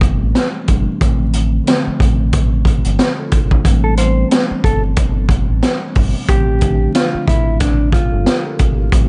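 Gritty and dark, this boom-bap hip-hop excerpt rides a swung groove built on a crunchy breakbeat drum kit, saturated and up front with a punchy kick and high-tuned snare, over a deep, round dub bass played with the fingers. A mellow tine electric piano, filtered and softened with cassette tape character, carries the chords from Am11/G through G7sus4/A throughout, while a dark, clean electric guitar enters at 3.8 seconds with a fingered melody bathed in tape echo until 8.4 seconds. Vinyl crackle and a dull, rolled-off studio sheen hang over the whole short clip.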